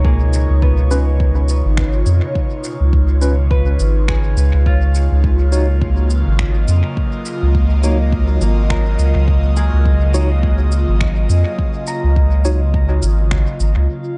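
A hazy, spacious stretch of ambient dub opens with a breathy, detuned pad holding sustained chords through chorus and phaser, a ringing concert harp fingerpicking arpeggios into dub echo, a round, deep sub bass sitting up front, and a layered electronic kick set in the background. At 104 BPM in 4/4 with a loose 16th-note swing, the harmony moves from Db7 to Ebm7, and tape-toned electronic cabasa and finger snaps, re-recorded in a large room and sent into dub echo, join at 0.3 seconds. From 0.9 seconds a worn, slightly out-of-tune tine electric piano adds mellow stabs through a combo amp, carrying medium tremolo and its own dub echo. As most of the other parts fall away near 13.9 seconds, a faint, glassy texture of drifting overtones surfaces on a single high note with chorus and its own reverb, alongside the lingering pad. The overall mix is dark and close, with little room sound, and the passage is cut from a longer piece.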